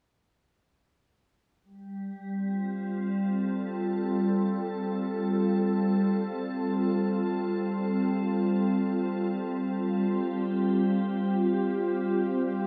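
Floating in free time, this serene, spacious ambient excerpt rests on a single G9sus4 chord, held by a solo FM pad that enters at 1.9 s and sustains until 12.7 s. The pad sits up front, glassy and ethereal with a mellow, ring-modulated edge. Its slow attack and long release move between G3 and A4, thickened by ensemble chorus, its own reverb and analog delay. A wet spring reverb and small room ambience give the echo-heavy mix its sense of open space.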